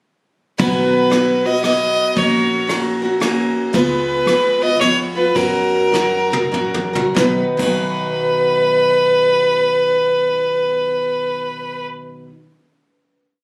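Honky-tonk and classic country in a lilting, swung 3/4, this short, complete piece has a nostalgic, easygoing mood. A clear, smooth fiddle sits up front with a motif-based melody in period phrases, played by one player with light vibrato, while a bright, boxy parlour-style steel-string acoustic guitar strums open chord shapes beside it. Underneath, a woody, thumpy upright bass with gut strings plays pizzicato root-and-fifth lines with walk-ups, kept in the background, and a soft brush drum kit with dark cymbals, a tight kick and a medium-tuned snare carries the waltz groove. The tempo slows from 3.7 seconds, a drum fill runs from 5.9 to 7.2 seconds, and the drums stop at 7.7 seconds as the band settles onto a final chord, with the fiddle continuing until 11.8 seconds. The sound has the feel of a phone recording in a club-like room, with moderate reverb and compression.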